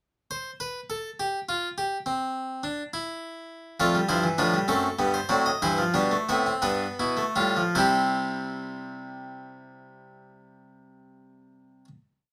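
A plucked, nasal Flemish-style harpsichord plays alone throughout this short, joyful and stately baroque-style fugue in 6/8, weaving four voices of imitative counterpoint that sit bright and up front in a moderate studio reverb. The whole piece is a compact exposition that begins slowing down at 2.9 seconds, moves through a closing cadence, and settles onto a final chord at 7.7 seconds that rings until the instrument stops at 11.9 seconds.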